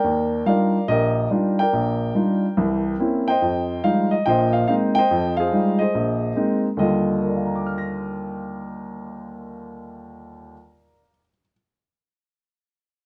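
A moderate club reverb wraps this short cut from a longer solo jazz piece in a warm, relaxed atmosphere. A woody, polished upright piano sits up front with long sustain, swinging in 4/4 at 142 BPM in Eb major and spanning Bb1 to Bb6. Its harmony moves from Ebmaj9 through C7b9 into alternating Fm9 and Bb9sus4 chords, then returns to Ebmaj9 at 6.8 s.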